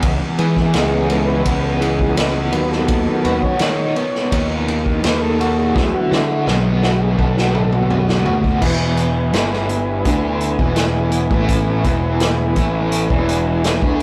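A transistor combo organ takes the lead, soloing over the first 8.6 seconds with a reedy, heavily vibrato-laden tone that lingers in sustained chords through to the end. This hazy, kaleidoscopic stretch of psychedelic rock, cut from a longer piece, moves at 84 BPM in a straight 4/4, with the harmony shifting from E to B/D# and then D6 before returning to E at 8.6 seconds. Underneath, a fuzz-soaked picked electric bass sits up front with an overdriven growl, while a double-tracked, overdriven semi-hollow guitar plays a bright riff colored by tremolo. A vintage acoustic drum kit, distant and roomy with dark cymbals, a punchy kick and a rolled-off top, works through kick, snare, hi-hat, ride, crash and toms, with a drum fill from 5.8 seconds leading into the second section. The whole thing has the rough feel of a rehearsal-room recording, with light reverb and a saturated glow.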